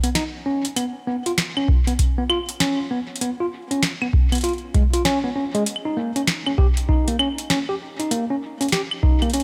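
A deep, up-front electronic kick drum enters at 1.7 s and anchors this playful, glitchy IDM fragment, which runs in 4/4 with a swung sixteenth-note feel. Around it, a booming analog drum machine supplies crisp snare, metallic hi-hats and claves, while a bright, clean tine electric piano plays arpeggios through its built-in speakers, both parts trailing dub echo. Light reverb surrounds the mix, and the tape-warm drums give the piece an analog character.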